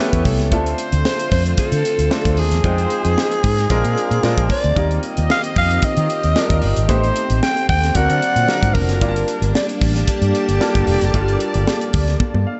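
Riding a lightly swung sixteenth-note groove in 4/4 from a crisp fusion drum kit with a punchy kick and high-tuned snare, this polished, nocturnal 1980s jazz-funk pop excerpt has a raspy, growling alto saxophone leading the melody over an amped fretless electric bass, a clear, intimate baby grand piano with subtle chorus, a smooth-topped horn section on a second line and a silky string machine holding chords in the background, with drum and piano fills arriving at 12.2 seconds.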